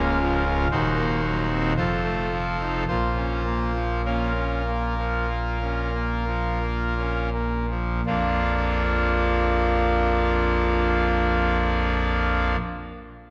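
A brassy pipe organ trumpet stop with bright chiff and baroque voicing sits up front, playing alone from Db1 to C5 in this solemn, grave classical chorale excerpt in 4/4 at 41-60 BPM, slowing through its opening 8.1 seconds over Bbm/Db, Cm7b5/Eb, F7 and Bbm before arriving on Bb, then ending at 12.6 seconds, all bathed in a dark, wet church reverb.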